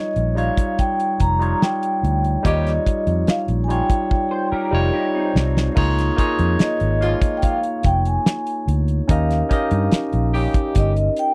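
A straight 4/4 groove at 72 BPM carries this smooth, lush slice of 1970s-style soul, with a damped drum kit of fat snare, tight kick and dark cymbals sitting up front beside a round, foam-muted fingered bass. A barky tine electric piano with phaser supplies the Eb9, Db69 and Eb7 harmony while a mellow soft-mallet vibraphone carries the melody with motor vibrato, and a tight horn section adds octave-doubled stabs from 2.4 seconds, around a band accent and a drum fill. An electric guitar through a small old amp, slightly broken-up and lo-fi with ensemble chorus, slips in a brief riff at 4.3 seconds, in a dry, close studio sound.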